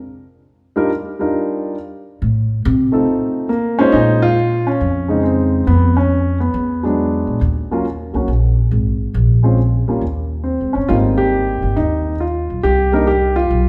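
A swung 4/4 at 138 BPM carries this moody, late-night jazz piano trio fragment in Bb minor, where an intimate, natural-sounding grand piano with audible action noise takes the melody from 0.8 seconds and a woody, growly pizzicato upright bass on steel strings joins at 2.2 seconds, both sitting up front in a reverberant recital hall as the harmony moves through chords such as Ebmaj7, Bbm11 and Abmaj7.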